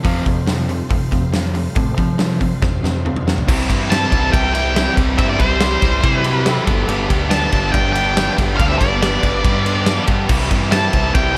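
A big arena sound with a lush hall reverb frames this driving, sunny classic rock excerpt, cut from a longer piece and moving at 141 BPM in a straight 4/4 over chords of F, C and G. Up front, a big acoustic drum kit with a fat snare and punchy kick lays down the beat on crash, hi-hat, ride and toms, while a growling, overdriven fingered bass adds punch underneath. Two bright, overdriven picked guitars, one crunchy and both touched with slapback echo, play riffs in the background, and a very quiet tonewheel organ with slow rotary and chorus vibrato holds full, lightly overdriven chords at the start and returns near the close. After a drum fill at 2.6 seconds, an octave-fuzz lead guitar takes the melody at 3.9 seconds with a dark, distorted tone and slapback echo, shadowed by a second fuzz guitar line set further back. A slightly broken-up slide guitar adds a brief second line at 6.0 seconds.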